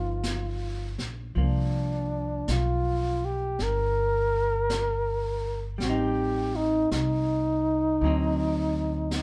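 A mellow, up-front flugelhorn sings a smooth-topped solo melody with vibrato over a dark, clean, picked hollow-body electric guitar, a woody, growly pizzicato upright bass and a distant, roomy brush kit with a high-tuned snare entering at 0.2 s, in this smoky, melancholic swung jazz ballad excerpt at 54 BPM in 4/4 that moves from G7alt through C9sus4 and Am7b5 to D7b9 under light reverb and a warm production.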